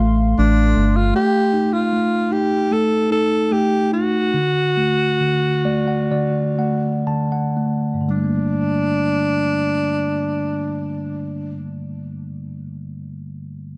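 This slow, emotional pop fragment in G minor opens with a growling alto saxophone, a clean tine electric piano, an organ-like FM bass and a sweeping resonant pad all sounding together. The bass is hollow and percussive with a fast, decaying attack, sitting dark and up front. Behind it, the detuned sawtooth pad evolves through chorus and phaser in the background, and both bass and pad drop out by 1.1 seconds. From there the tempo gradually slows within a 57 to 78 BPM range, and the electric piano plays a fill starting at 5.2 seconds. The saxophone carries the longing, jazz-style solo with a breathy subtone, light vibrato and a raspy edge, close-miked and set in plate reverb and digital delay. At 8.1 seconds the harmony moves onto a Gmadd9 chord, and the piano carries on after the horn in a dark, lightly reverberant mix.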